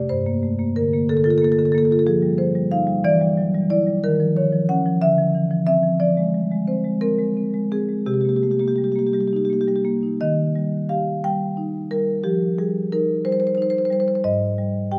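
Contemporary classical music for solo marimba, flowing and reflective, moves in a rubato 6/8 at 60 BPM to the dotted quarter: the dark, smooth marimba, played with medium mallets and heard up front from G2 to G5 through close, detailed microphones with light reverb and tuned to A4 = 439 Hz, drifts through chords such as Gm9, Em9 and Dm9 before settling into Eb major at 10.2 s in this fragment cut from a longer piece.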